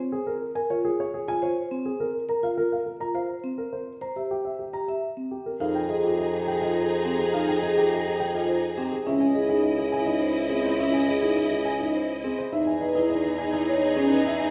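Soft-mallet vibraphone arpeggios ring with a metallic shimmer and slow motor vibrato while a dark, intimate grand piano carries the melody, its action noise audible, in this hypnotic, propulsive minimalist classical pattern piece at 104 BPM in 3/4, cut from a longer work, until at 5.6 s the music settles into F minor as a very quiet, distant French horn adds a mellow second line, a rich bowed string section holds sustained chords, and a warm bassoon supplies the bass, all heard from further back in a reverberant recital hall.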